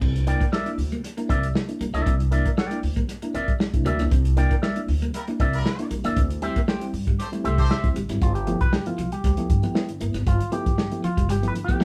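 An up-front, dry soul drum kit with muffled dark cymbals and a tight kick drives this energetic funk excerpt at 117 BPM in a straight 4/4, joined by a woody, growly upright bass, a twangy envelope-filtered guitar, a clean electric guitar riff through a phaser and reedy electric piano stabs with fast tremolo. Over C9 moving to D9sus4, a distant, clear horn section adds a second line with light vibrato between 5.1 and 7.8 seconds. From 8.2 seconds the harmony shifts to G13 and the phaser guitar takes a solo, all in a moderately reverberant room with the band playing live together.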